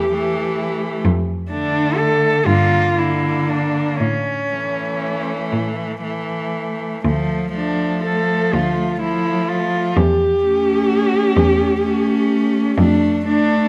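This classical passage for cello ensemble, cut from a longer piece, is elegiac and solemn, moving in a slow, rubato 6/8 at roughly 38-44 BPM in D minor. Four bowed cellos, each a single player, play together for the full 13.7 seconds. The up-front melody cello carries the lead with a rich, expressive tone, soft attacks, vibrato and portamento. Beneath it a second cello sings an inner line with a smooth top and vibrato, while a third, close and focused, supplies the accompaniment. A clear bass cello, also close and up front with vibrato, anchors the low register. The chords pass from A over E through Gm7 and A to D minor and A7 over E, all set in a moderate recital hall reverb captured by detailed microphones.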